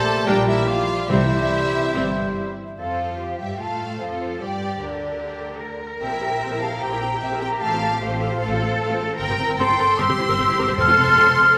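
A mellow, pure flute ensemble sits above a lush, bowed violin melody placed in the background and a second smooth-topped violin section in this dramatic, urgent classical orchestral excerpt at 150 BPM in F major with rubato, as a clear clarinet, oboe, bassoon and tight French horns colour only the opening 2.5 seconds, close violas, vibrato-rich cellos and woody, distant double basses underpin the texture from 0.3 s, and round, very quiet timpani sound at 1.1 s and again near the close, all within a reverberant concert hall.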